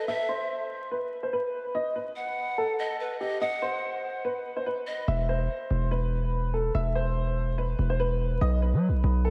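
A heavy, distorted 808-style bass punches in up front at 5.1 seconds in this tense, menacing half-time hip hop piece at 144 BPM, taking over from a breathy, chiffy pan flute with vibrato and joining a woody, vintage upright piano melody that carries a filter sweep through the opening, with the harmony moving from E5 to B5 inside a dreamy mix soaked in plate reverb and vinyl crackle.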